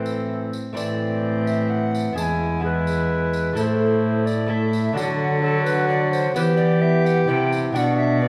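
Solemn and courtly, this short piece from a longer renaissance-style consort dance moves in a stately triple metre with a straight feel. An airy alto recorder carries the melody with vibrato and a crisp, chiffy attack, heard up close, while a distant, bowed viola with gut-string tone and light vibrato traces a second line beneath it. A bright, delicate fingerpicked lute with double gut strings sits in the background, alongside a mellow, closely miked bassoon with light vibrato. A rich, reedy period-style cello anchors the bass up front, and a jingly tambourine adds faint percussion from 0.1 to 8.0 seconds. The harmony passes from Am through E, D and Em before landing on Bm at 7.8 seconds, all bathed in a dark recital-hall reverb.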